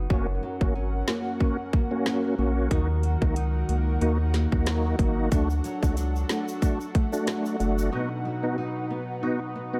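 A dancehall groove at 92 BPM with a light swing drives this sunny, summery excerpt in F# major, carried by an overdriven island pop drum kit with a tight kick, woody snare and metallic hats, alongside a round, deep analog bass, both up front until 7.9 seconds, when a break leaves the other parts to finish. A reedy tonewheel organ with key click, chorus vibrato and slow rotary speaker plays accompaniment over a dark, boxy nylon-string guitar fingerpicking arpeggios through tape echo, while an airy, breathy pad holds soft sustained chords with chorus and sidechain pumping. A bright egg shaker joins at 5.3 seconds as the chords move from F# through D#m and D to B, all set in a digital ambience.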